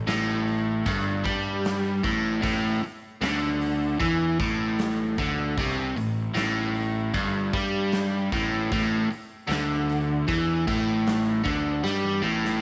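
Gritty and brooding, this short cut from a longer piece blends blues rock power trio weight with a southern rock edge in a steady, straight 4/4. A biting overdriven guitar carries the riff up front, its double-tracked, picked tone sitting in a low register and dominating the mix. Underneath, a fuzz-laden electric bass growls with a punchy, overdriven grit, heard both direct and through an amp. A big acoustic rock kit fills out the trio with a punchy kick, a medium-tuned snare, hi-hat and toms, captured in a bright stone room. A drum fill from 11.8 to 12.6 seconds closes the passage, with light studio reverb adding a touch of space.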